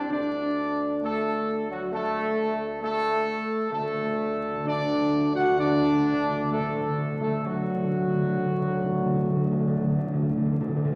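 Articulate timpani, struck with hard mallets and sitting up front, enter with a fill at 3.7 seconds beneath a majestic, triumphant classical brass passage cut from a longer piece. A clear, tight trumpet section carries the melody over sustained chords from a mellow French horn section in the background and a warm trombone section, while a distant, roomy tuba with a soft attack holds the bass until 10.9 seconds. The whole sits in a wet scoring-stage reverb with a layer of vinyl crackle.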